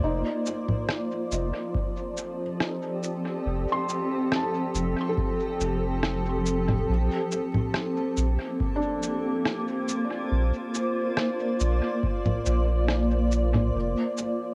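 A cloudy, blurred granular pad holds sustained chords through this hazy, peaceful ambient dub excerpt at 70 BPM in F mixolydian, moving from F7 to Bbadd9, while a muted felt upright piano with audible action noise plays arpeggios through tape echo and plate reverb, a round, soft sub bass sits deep beneath, muffled, pitched-down electronic cabasa, congas and rim click carry dub echo, and an analog electronic kick enters at 1.7 s ahead of a band accent at 12.9 s, all captured as a home cassette recording with light reverb.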